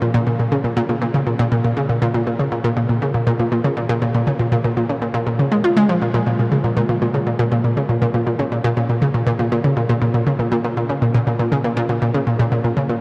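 Hypnotic and expansive, this ambient excerpt unfolds in straight 4/4 time and is carried entirely by a lone analog pluck synth. The pluck blends sawtooth and square waves with a detuned edge and a noise layer, giving each note a round yet bright body shaped by a quick filter snap and a short decay. Chorus and delay thicken its sound, and it sits up front in the mix while spanning a range from Bb2 to F4. A huge, wet ambient reverb with a 7.6-second tail places the synth in a vast, echoing space, so every note blooms into a long haze. The piece shifts into a new section at 6.0 seconds, and the pluck carries on alone until the fragment ends at 13.0 seconds.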